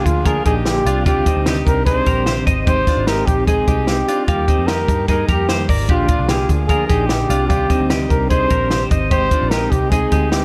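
Set in a light studio reverb, this youthful, breezy excerpt of jangly indie pop at 149 BPM in Bb mixolydian puts a breathy, whispered trumpet up front with scooped notes and vibrato over a slightly broken-up, tremolo-shaded electric guitar, a bright, twangy twelve-string guitar picking arpeggios, a dark, foam-muted vintage bass and a dry, compact cocktail drum kit with a high-tuned snare and punchy kick, all cycling between Bb7 and Abmaj7.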